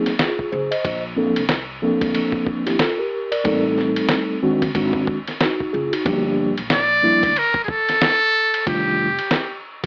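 Warm yet cool in mood, this short cut from a longer jazz-hop piece sits at 92 BPM with a lazy swing on the sixteenths. A mellow tine electric piano carries the lush extended chords up front from the start, moving through Ab9, Bbmaj9 and Am7b5 toward Gm7 and a closing F13. Beneath it, a muffled, pitched-down sampler-style kit thumps along with a compressed kick, a medium-tuned snare, hi-hat and ride, while a woody pizzicato upright bass with transformer saturation sits low in the mix. At 6.7 seconds a buzzy, breathy trumpet with a metal mute steps forward for a brief solo, scooping into notes with light vibrato. The whole recording has a dry, gritty hardware character with an AM-radio tint and only a touch of reverb.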